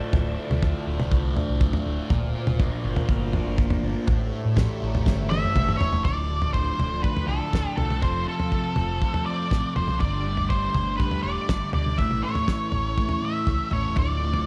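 A light reverb frames this dark, mysterious psychedelic rock passage, cut from a longer piece and played with a straight 4/4 feel. A double-tracked, thick fuzz guitar carries the riff throughout, its distortion colored by a phaser. Beneath it, a lush, vintage string machine holds sustained chords with a slow attack and ensemble chorus, while a reedy, nasal harmonium drones in the background until 6.1 seconds. A round, amped fingered bass anchors the low end, and a dry 70s drum kit with a fat snare and tight kick keeps time, adding a fill from 5.1 seconds. From 5.3 seconds an up-front octave-fuzz lead guitar plays the melody through tape echo, as the harmony moves from Dmadd9, Bbadd9/D and A7 into a Dm, F, Gsus2 and A progression.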